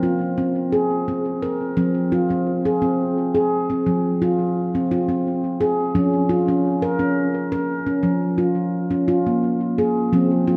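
World meditative music for solo handpan in a gentle, unhurried 3/4, with the ringing, mellow tones of stainless steel played with soft fingertips sitting up front in a boxy small-room sound. Tape echo trails the notes, and a long plate reverb soaks the mix in a dreamy haze. The harmony settles on a new chord at 5.9 seconds, and the excerpt, cut from a longer piece, ends at 10.6 seconds.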